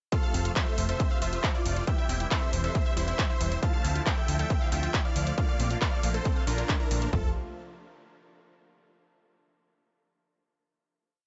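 A four-on-the-floor distorted kick with toms drives this euphoric, soaring uplifting trance piece at 137 BPM in F major, joined by overdriven claps and hi-hats, a punchy off-beat analog bass entering at 0.3 s, a huge, detuned supersaw lead carrying a repeating riff melody in thirds and sixths through digital delay and sidechain pumping, a lush 16-step unison pluck arpeggio in the background, and an evolving, phased supersaw pad, in a dry mix with little reverb, before the drop gives way to a final F chord at 7.1 s.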